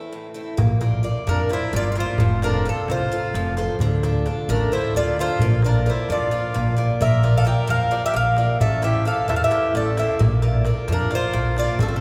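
Greek folk for a bouzouki band, this driving, intense excerpt runs at 262 BPM in eighths in 7/8, with a straight feel over chords moving from Am through Bb, F and Dm. The bright, metallic bouzouki carries the melody on doubled strings, some octave-doubled, over a boxy picked archtop guitar with audible finger squeak. The growly, woody pizzicato upright bass sits up front from 0.6 s alongside a very quiet, deep clay darbuka with a small-room sound. From 1.3 s a reedy, close-miked accordion adds a full, dry second line, while the long, wet reverb of a church or concert hall surrounds the band.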